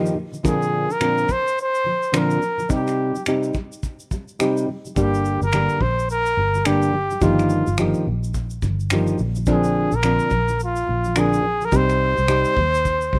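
A rough home demo in a small room, this excerpt of reflective, tender acoustic pop moves at 106 BPM in C minor with a swung sixteenth-note feel. A full-bodied, thumb-plucked nylon-string guitar sits up front beside a breathy, close-miked trumpet that carries an intimate melody with vibrato and a soft attack. A cloth-damped drum kit of finger snaps, tight kick and shaker sounds muffled and gritty with a rolled-off top, and from 5.0 seconds a dark, round, foam-muted electric bass joins under chords that move through Bbadd9, Cm, Gm and Ebadd9/G.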